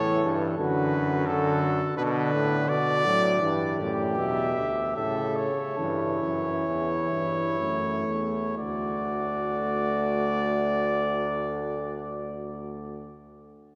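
All four brass voices sound together from the first moment of this stately yet lively classical canzona for brass ensemble, a fragment cut from a longer piece. A warm trumpet carries the melody up front, while a flugelhorn weaves an imitative second line just beneath it with a soft, close-miked tone. A mellow euphonium supplies the accompaniment with light vibrato and a gentle attack, and a bright bass trombone anchors the low end. The pace gradually slows from 0.6 to 8.6 seconds as the harmony moves through minor chords before settling, and a new section begins at 8.6 seconds. The whole ensemble is bathed in a wet church reverb with a long, lingering decay.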